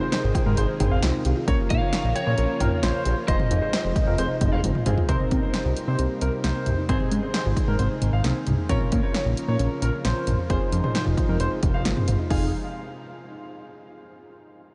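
Bathed in a huge ambient reverb that gives the mix a dreamy haze, this nocturnal, driving synth-pop excerpt in F minor at 133 BPM rides a punchy, tape-warm analog drum machine and a fat, thick sawtooth bass up front, while a smooth, warbling detuned pad and round filter-swept analog keys sit in the background beside a soft, very quiet pluck arpeggio, an intimate concert grand piano with audible action noise plays a second line through lush chorus and analog delay, a slightly broken-up lead guitar carries the melody from 1.7 to 4.6 s, and a drum fill at 4.6 s leads into a section cycling through Cm7, Ab, Bbm and Fm7.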